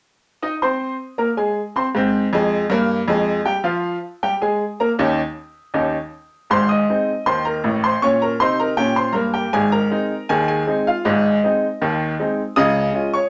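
A bright upright piano opens the recording at 0.4 seconds, playing solo in a playful, lively ragtime style. The tempo sits at a moderate 79 BPM in 2/4 with a straight feel, and the music is in Ab major. The piano's tone is brilliant and woody, placed up front with a polished, present sound, and it ranges from deep bass notes up to high treble. The harmony moves from Ab to Eb7, then a new section begins at 6.5 seconds, passing through Eb7 over Bb and back to Ab before touching Db near the close. A wet studio ambience with a short decay surrounds the instrument, and the recording is cut from a longer piece, stopping at 13.3 seconds.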